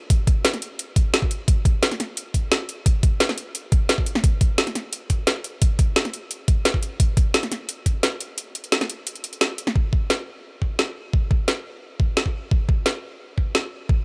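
This drum and bass excerpt moves at 174 BPM in a straight 4/4, with a lush, rolling mood carried entirely by its drums. An electronic kick drum supplies a knocking, layered low end, while a garage drum kit adds a woody snare and metallic hi-hats. Both drum parts are overdriven and sit up front, each with a small room ambience, and the whole recording has a digital ambience. The opening drop runs to 9.8 seconds, with a short break tucked in from 8.4 seconds before the next section begins. The garage kit stops at 13.6 seconds, leaving the kick to carry on to the end of the cut.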